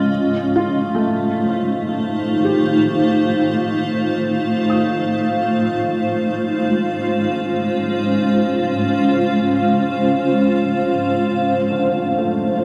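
Luminous and peaceful, this ambient passage in free time and F mixolydian, cut from a longer piece, rests on a cloudy, detuned granular pad that sits up front with its own reverb, holding sustained chords that move from F7 to Dbmaj7 at 5.7 seconds. Behind it, a soft, felt-muted upright piano plays intimate arpeggios through tape echo, its action noise audible as it fades out over the first 11.3 seconds. At that point the harmony settles on F and a filter sweep passes over the pad, all set in a vast, echoing cathedral space.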